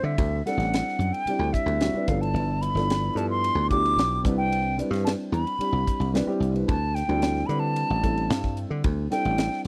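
A concert flute carries the melody up front in this bright, soaring snippet of electric jazz fusion, its airy, vibrato-laced tone expressive with a soft attack and a touch of slapback echo. Beneath it, a dark, mellow concert grand piano with deep bass plays accompaniment over D9sus4, G13 and Cmaj9 chords, while a foam-muted, punchy thumbed slap bass sits up front. A crisp, polished drum kit with a high-tuned snare, ride cymbal and hi-hat joins at 0.2 s, all captured in a dry, close 1970s-style studio sound.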